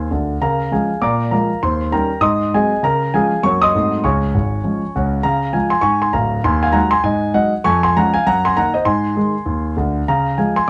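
A lone concert grand piano opens this brief fragment of exuberant, swinging stride jazz, racing along at 199 BPM in 4/4 with a light swing on the eighth notes. Set in Db major, the solo piano covers a broad span from the deep bass at D1 up to Eb6, moving through a turnaround of Db, Bb7, Eb7 and Ab7 before an Ab7b9 pulls back home to Db around 4.0 seconds. A second pass begins at 5.2 seconds and winds through Db/F and Ebm/Gb to Ab, landing on Db again at 10.1 seconds. The instrument sounds intimate and natural, placed up front with a warm, rich low register, and the mechanical action noise of the keys remains audible beneath the notes. A moderate club reverb gives the playing a sense of a small, lively room.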